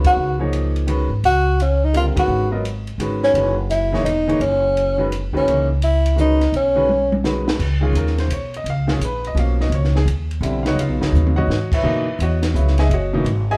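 A swung three-four lilt drives this searching, spiritual modal jazz passage, cut from a longer piece, with a band accent at the start and again at 2.1 seconds over suspended chords. A whispered, breathy tenor saxophone carries the intimate melody with vibrato, subtone and scooped notes until 7.2 seconds, while a clear grand piano with deep bass accompanies and a woody, thumpy pizzicato upright bass holds the low end. A compact cocktail drum kit, dark and rolled-off on top with a high-tuned snare, adds a fill at 6.9 seconds, and the band plays together in one room with a moderate large studio reverb.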